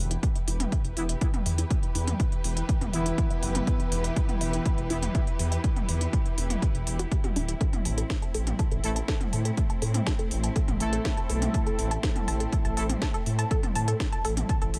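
Melodic techno with a dramatic, cinematic mood, built on a heavy, up-front electronic kick, a techno kit with a cracking snare and smooth hats, and a deep, rumbling detuned saw bass warmed by tube saturation, while a distant, woody string section holds lush sustained chords, a tight sequenced synth drives mellow arpeggios under a filter sweep in the background, and bold, fat analog brass stabs arrive at 1.0 and 8.8 seconds, with sidechain pumping through the strings, bass, hats, toms and synths in a dry mix cut from a longer piece.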